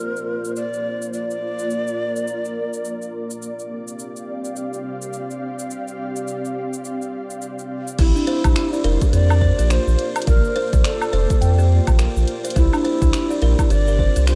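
This organic downtempo excerpt has an earthy, hypnotic mood and a swung groove. A breathy, woody Native American-style flute carries the melody with vibrato and a crisp, chiffy attack. It falls silent at 3.1 seconds and returns at 8.0, treated with tape echo. Beneath it, an ethereal, airy pad holds sustained chords with ensemble chorus, built-in reverb, tremolo and sidechain pumping, and a filter sweep moves across it through the opening. A deep house kit of dark hi-hats, finger snaps, shaker, woodblock and crash cymbal ticks along in the background. At 8.0 seconds a buzzing, plucked kalimba adds echoing arpeggios, a round, deep analog bass sits up front, and a punchy electronic kick anchors the beat, all within a dark production and light reverb.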